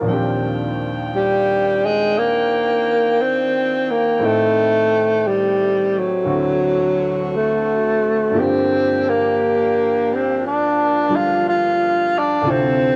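A breathy tenor saxophone carries the melody up front from 1.2 seconds, its mellow, whispered subtone tone shaped by vibrato, soft attacks and scooped notes in a tender, intimate jazz ballad at 58 BPM with a gentle swing. Beneath it, a clear baby grand piano accompanies while a warm saxophone section holds sustained chords, moving through Ebmaj13, Am7b5 and D7 before settling on Gm7 and Dm7. The cassette home recording adds tape character, light reverb and small-room ambience to this short excerpt cut from a longer piece.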